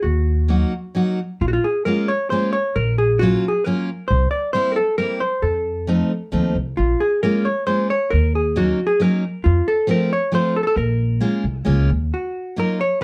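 A dark, clean hollow-body jazz guitar carries the melody over woody pizzicato upright bass from the opening, joined at 0.5 s by a bright, fresh-stringed steel-string acoustic guitar picking the accompaniment, all three up front. This whirling, nostalgic musette waltz in Bb minor moves at 134 BPM in a rubato 3/4 feel, tuned to A4 = 437 Hz, with a brief break at 1.0 s before the harmony travels from Bbm7 through C7 and F7 to a closing Ebmadd9. The bass drops out at 12.1 s, and the small room's moderate reverb and dark, warm production round out this cut from a longer piece.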